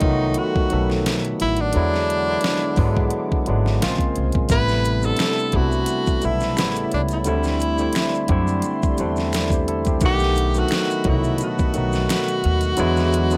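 Over a swung 87 BPM groove from a knocking, overdriven pop drum kit and woody pizzicato upright bass, this late-night, soulful neo-soul R&B excerpt in A dorian features a breathy, scooped tenor saxophone melody up front, backed by a barky, lightly overdriven tine electric piano and a shimmering chorused pulse-width pad in the background, with dry maracas and finger snaps joining at 4.5 seconds, all in light reverb.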